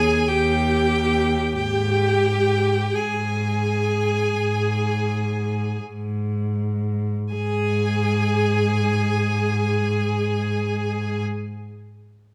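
Classical music, a slow romantic movement for string quartet, heard in a short passage cut from a longer piece, with an elegiac, solemn mood and a free, rubato feel in four. All four bowed players use vibrato. A single violin with a rich, focused tone carries the melody high above the group, while a second violin of clear tone sings its own line beneath. A solo viola with a smooth top fills the accompaniment, and the cello sits up front on the bass with an even tone, the most present voice of the quartet. The opening section slows through its first 7.3 seconds before a second section begins, and the four instruments play together from the start until 11.2 seconds, all inside the moderate reverb of a recital hall.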